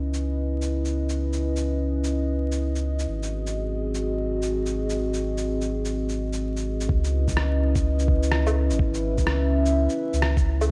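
A dreamy, reverb-soaked mix with a film of vinyl crackle opens this wistful, rainy future garage excerpt, set in C# minor at 126 BPM in 4/4 with a 63% swing on the sixteenths. A dark analog pad holds sustained chords up front, its detuned square and sawtooth tones thickened by chorus, a sub octave, a moving notch and a vintage 12-bit sampler grit, and it pumps against the sidechain as it shifts from C#m9 to G#7 and back. Beneath it, a round sine sub bass sits close and mellow, pumping in the same way. From 0.1 s a muffled, pitched-down kit of electronic shaker, rim click and woodblock ticks along with a compressed, overdriven character, sounding as if re-recorded in a small room. At 6.9 s, when the second section begins, a thumpy electronic kick joins with the same sampler-style, overdriven crunch. Moderate plate reverb ties the parts together into a moody, hazy whole.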